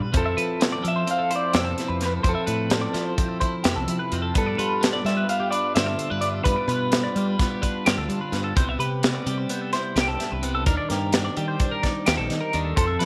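An up-front studio drum kit with a punchy kick and a high-tuned snare drives this wistful math rock and midwest emo passage in 9/8 at 257 BPM, moving through Fmaj7, G9, Cmaj7 and Ebmaj7 in F lydian. Two clean, compressed twelve-string electric guitars share the texture, one holding down a mellow picked accompaniment and the other spinning bright, phaser-tinged arpeggios above it, while a direct-sounding fingered electric bass anchors the low end. A dark, slightly broken-up electric guitar through a small old amp carries the spring-reverb melody from 0.2 to 8.3 seconds and returns briefly at 12.8 seconds, all set in a light studio reverb.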